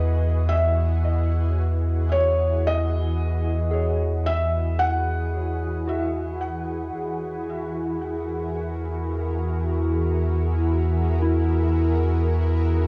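At a slow 56 BPM in straight 4/4, this ambient excerpt in E lydian drifts by with a peaceful, warm feel, moving from Emaj9 to F#add9/E at 7.0 seconds. A shimmering, ethereal pad fades in across the whole 12.9 seconds, its detuned, granular chords carrying an octave-up shimmer, chorus and built-in reverb, and a cassette-tape haze. Up front, a felt-muted upright piano sings a short, intimate melody between C#5 and F#5 that stops at 6.4 seconds, its mellow tone thin with felt and marked by audible action noise, dressed in cassette tape, plate reverb and tape echo. A very quiet FM synth bell traces soft, pure arpeggios throughout, while a deep, round sub bass holds a steady E2 beneath. The home cassette recording sits in a moderate studio reverb, lending the whole a warm, homespun intimacy.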